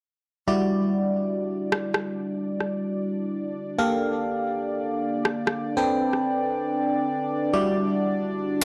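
Skippy and bouncy, this short UK garage fragment in a two-step style floats in free time in E minor, with an up-front, glassy FM electric piano laying bell-like stabs through chorus, phaser and tape echo over a smooth, detuned analog pad holding sustained chords, while a tape-warm electronic rim click sits up front from 1.7 to 6.2 seconds, all set in a dark production with a wet plate reverb as the harmony moves from Em9 through Gm9 and Am9 back to Em9.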